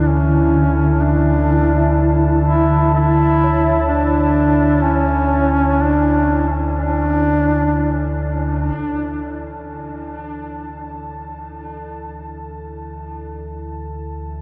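A mellow duduk with vibrato and scooped notes carries a folk-style solo melody up front until 8.2 seconds in this desolate, dark ambient drone excerpt in free time, over a deep, ominous rumbling drone that fades in and takes a filter sweep from 8.7 seconds, a moody detuned analog pad with chorus holding a Dsus2 chord, and very quiet bronze metallophone arpeggios with shimmering beats from padded disc mallets, set in a huge, dark reverb.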